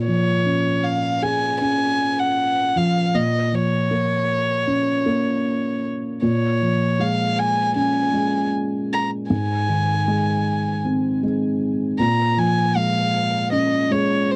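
A single violin carries the melody from 0.1 seconds, played sul tasto with a soft attack, an airy bow and light vibrato, its tone warm and a little boxy as it sits up front in the upper register. Beneath it, a felt-muted upright piano provides the accompaniment from the very start, its thick felt giving a dark, mellow sound, with the action noise clearly audible. This slow pop fragment, cut from a longer piece, is melancholic and heartbroken, moving in a straight four-beat feel through minor chords that shift briefly to a major one at 9.3 seconds before returning home. The recording is dry and close, in the manner of a 1970s studio, which makes both instruments feel intimate and near.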